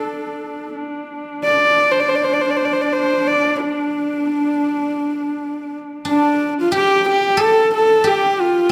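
Solemn and vast, this short excerpt of Mongolian folk music moves at 91 BPM in a straight 4/4, centred in the D yu mode. A close, intimate horsehead fiddle carries the melody up front with a husky, airy bow, light vibrato and gliding portamento, while a second, darker and woody horsehead fiddle holds a drone on D4 until 6.1 seconds. At 6.0 seconds a silvery, ringing guzheng played with fingerpicks enters with a second line as the piece moves into a new section, all set in a wet scoring-stage reverb.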